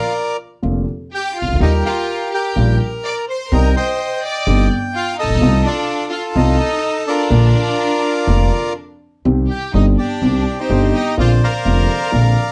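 A reedy, close-miked bandoneon carries the melody up front in this passionate, melancholic tango excerpt at 125 BPM with a rubato feel, alongside a distant, clear chamber violin section bowing a second line with vibrato; a mellow, boxy concert grand with audible action noise and a woody, thumpy pizzicato upright bass on gut strings join moments later, all set in a dark production with light reverb that settles into C minor at 9.3 s.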